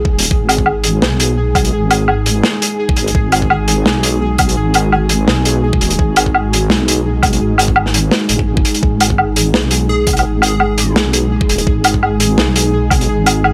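Half-time drum and bass in G# minor at 169 BPM, this heavy, tense excerpt rides a lightly swung sixteenth-note feel over a single section. A deep, soft wobble bass sits up front with a warm, compressed, chorused wobble, while a dark analog pad holds sustained chords, its detuned, ring-modulated tone breathing under sidechain pumping. A bright, pulsing gated texture hovers on G#4 with chorus and its own reverb, tempo-synced and quiet in the mix. The drums pair an overdriven, knocking electronic kick with a crunchy breakbeat kit of hi-hat, snare and woodblock, gritty and saturated with a rolled-off top and a medium-tuned snare, all set in a small room. Briefly, from 9.9 to 10.9 seconds, a plucky unison lead flickers in the background on G#4, punchy and catchy through lush chorus and digital delay.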